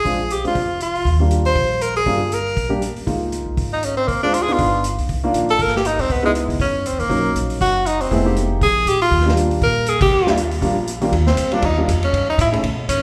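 A bright, forceful tenor saxophone sits up front with vibrato and a punchy, present tone, carrying the melody through this relaxed small-group swing and bop excerpt in Eb major at 238 BPM with a swung 4/4 feel. A baby grand piano with a natural, short-sustained sound supplies accompaniment until 12.6 seconds, while a woody, thumpy pizzicato upright bass on steel strings anchors the low end. A vintage drum kit of hi-hat, kick, ride and snare sits mid-forward, gritty and saturated, with dark cymbals, a tight kick and a rolled-off top. The harmony moves through rich extended chords such as Ebmaj9, Db69, Dbm9 and Bmaj9, and the band hits an accent together at 10.0 seconds. From 11.1 seconds the saxophone takes a solo over a return to Ebmaj9, all heard in the lingering reverb of a recital hall.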